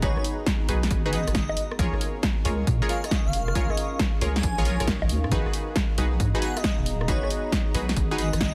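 Skippy and soulful, this 136 BPM two-step UK garage excerpt in G# dorian swings its 16ths over G#m7 and A#m7 chords, with an overdriven punchy kick and an up-front analog drum machine of snare, hi-hat, rim click and bongos alongside a deep, dark wobble bass that pumps against the sidechain, while bright filter-plucked chord stabs, an airy, dreamy lead with vibrato and portamento, a very quiet ethereal pad, and a warbling, nostalgic tape-like pad in the background sit under light reverb and vinyl crackle in a dense, heavily limited master.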